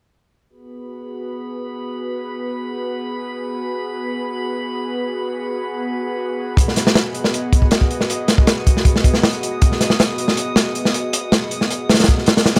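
Raw and atmospheric, this drum and bass and jungle excerpt in G# minor at 158 BPM opens on a breathy, full-bodied pad holding a sustained G#m7 chord with slow attack and chorus, joined at 0.9 s by a drifting, glassy harmonics texture whose calm sine overtones carry their own reverb. At 6.6 s a crunchy breakbeat kit arrives up front, its gritty, saturated kick, snare and hi-hat sounding mid-forward with a rolled-off top, all set in light studio reverb.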